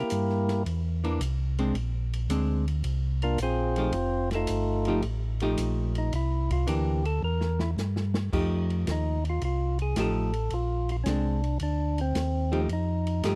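Soul jazz organ trio at 110 BPM in 4/4, swinging its eighths in F mixolydian with a greasy, swinging mood. A percussive tonewheel organ carries the melody as a solo through the opening section, its fat, lightly overdriven tone marked by third harmonic percussion, key click and a stopped rotary speaker. Beneath it, a second, mellow tonewheel organ supplies a round, dark bass line through a slow rotary speaker. A clean, hollow-body archtop guitar joins at 1.0 seconds with picked accompaniment, while an airy acoustic drum kit with dark cymbals, a medium-tuned snare and a boomy kick plays a fill from 7.2 seconds into a new section at 8.3 seconds. The harmony moves through C9, Bb9 and F9 chords, and the dry, close, 1970s-style studio sound keeps the organs and guitar up front in this cut from a longer piece.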